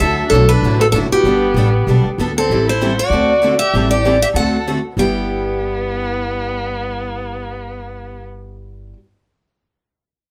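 A bright, up-front steel-string guitar with finger squeak carries the melody from the first moment of this lively, swinging jazz manouche excerpt, alongside a nasal, expressive bowed violin with vibrato and portamento on a second line, two picked guitars in the background (one a parlour instrument with fresh strings and a boxy tone, the other a concert model), and a woody, dark, thumpy pizzicato upright bass on gut strings, all played live together in a moderate studio room as the chords move from Dadd9 and Gadd9 through Am7 and D7 to G6 at 5.0 s.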